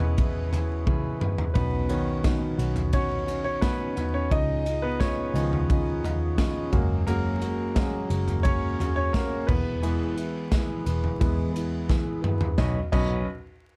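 A dark, dry production flecked with vinyl crackle frames this uplifting, warm slice of piano-driven pop, where a clear, intimate concert grand with audible action noise and long sustain carries a featured solo up front through 12.6 seconds over a full-bodied, fingerpicked jumbo steel-string guitar riff, a round, foam-muted vintage electric bass and a punchy modern studio kit with bright cymbals that drops in fills at 0.9 and 11.9 seconds across a progression moving from E through Badd9, C#add9 and F#add9.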